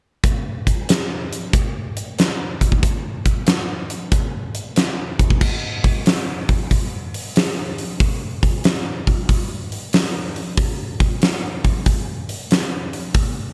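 Heavy, brooding rock at 93 BPM in 4/4 with a swung eighth-note feel, carried entirely by a huge acoustic arena drum kit of crash cymbal, hi-hat, boomy kick and fat snare with a big-room character, sitting up front in an otherwise dry mix as it plays from 0.2 to 13.3 seconds, moving into a new section at 5.4 seconds in this cut from a longer piece.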